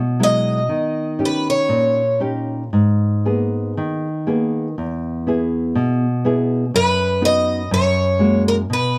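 Rubato and unhurried in 2/4, this mournful, passionate fado-style ballad rests on an up-front, thumb-plucked classical nylon-string guitar accompanying throughout, while a bright, boxy, shimmering octave-doubled twelve-string archtop picks a short melody at 0.2 s and returns at 6.8 s, all set in a dark production with a moderate small-room reverb.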